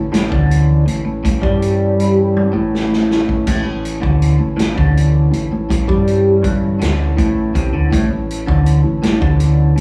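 A slightly broken-up, phaser-tinted electric guitar riff through a small old amp sits up front in this hazy, kaleidoscopic psychedelic rock excerpt in A mixolydian at 54 BPM in 6/8, carried by a round hollow-body bass, a punchy vintage drum kit with dark cymbals that plays a fill from 2.4 to 3.5 seconds, very quiet soft-handed congas, and sustained chords from a mellow, overdriven combo organ with light vibrato, the band playing live together in one room with wet, large studio reverb.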